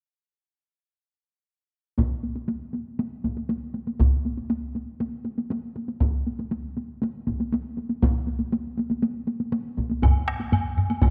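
Japanese traditional taiko drum ensemble music at 119 BPM in a straight 4/4, ceremonial and driving, with two taiko groups up front from 2.0 seconds, one struck with hard sticks and the other with heavy sticks, both close and dry, joined at 10.0 seconds by a third heavy-stick taiko group in a small room and a woody woodblock in a live room, all set within a moderate concert-hall reverb and captured by close, detailed microphones in this fragment of a longer piece.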